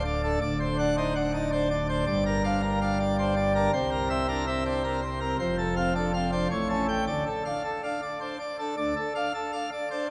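A solo pipe organ on full plenum, brilliant with mixtures, audible chiff and baroque voicing, sits up front in a wet church reverb of 3.3 seconds, playing a dramatic, majestic classical toccata fragment in D minor at 108 BPM in 3/4 that spans D1 to G5 and moves through D7, Gm7, C7, F and A7 before settling on D minor at 7.1 seconds.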